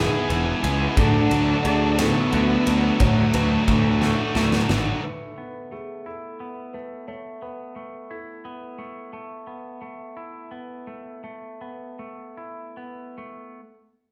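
Set in a slow, straight 6/8 at 59 BPM counted in dotted quarters, this cinematic, hopeful post-rock fragment is cut from a longer piece, tuned to A4 = 442 Hz, and opens over Eadd9 moving to D. From 0.3 s a huge arena drum kit with a fat snare, punchy kick and ride cymbal drives beneath a fuzz-laden picked electric bass sitting up front and a bright, double-tracked riff on a cranked stack guitar. From 1.0 s a dark, woody bowed cello carries a short vibrato melody while a very quiet phased analog pad swirls with sustained chords. A drum fill closes this opening before the band drops away at 5.0 s, leaving the harmony on Asus2. Twangy, clean electric guitar arpeggios, present from the start, carry on beside a soft, felt-muted upright piano that has been arpeggiating in the background with audible action noise since the opening, until the piano stops at 8.8 s. From 9.1 s the tempo slows as the guitar rings on alone to the end, heard in a moderate large studio reverb with the band playing live in one room.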